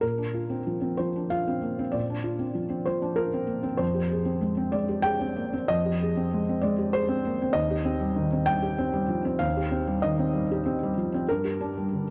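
Neoclassical minimalist piano in a rubato 3/4, this intimate and melancholic passage from a longer piece features a solo felt-muted upright piano, close and mellow with audible action noise and short sustain, tuned slightly below standard pitch and set in a moderate plate reverb as it moves from Bbadd9 through Fmadd9 and Cm/Eb to Gm.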